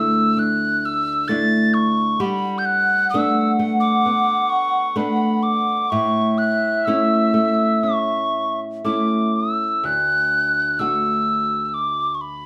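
Celtic folk in the form of a slow air, this short excerpt moves at a rubato 58-66 BPM in D major with a tender, nostalgic mood. A mellow, hollow tin whistle carries the melody from the start, sitting up front and close with a pure tone, vibrato and a crisp chiff. Beneath it, a fingerpicked nylon-string guitar gives woody accompaniment, its old strings lending a small, intimate body as the harmony moves from Dsus2 through Gadd9 and A before settling on D at 9.8 seconds. A baroque flute joins at 2.2 seconds with a second line, its wooden tone warm with a crisp attack, rolled-off highs and an expressive vibrato, and falls away at 9.3 seconds. The trio sounds like a band playing live in one large studio room, wrapped in a moderate reverb that gives the slow phrases space to breathe.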